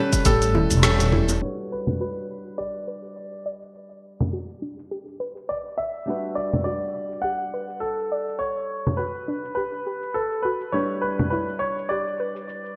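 Smooth and warm, this sunset chillout fragment at 103 BPM with a swung 16th-note feel sets a bright, worn concert grand piano melody over fingerpicked flamenco guitar and soft, round synth-pluck arpeggios that take on a filter sweep from 1.4 s, each carrying digital delay, while a gritty, compressed sampler-style drum kit of congas, hi-hat, rim click and shaker sits up front with gated reverb, and a woody, growly pizzicato upright bass and soft-handed bongos and congas appear only from 0.3 to 1.4 s, as the chords move from A7 to Gmaj7 and Em7 in a lush hall with a bright 1980s-style digital sheen.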